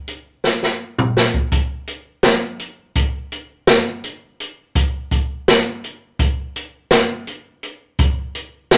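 An open jazz drum kit, acoustic and up front with a medium-tuned snare, boomy kick, hi-hat and toms, drives this bright, intricate progressive instrumental in 9/8 at 167 BPM in eighths, entering at 0.1 seconds and playing a drum fill from 0.4 to 1.5 seconds inside a wet small-room ambience, in a short cut from a longer piece.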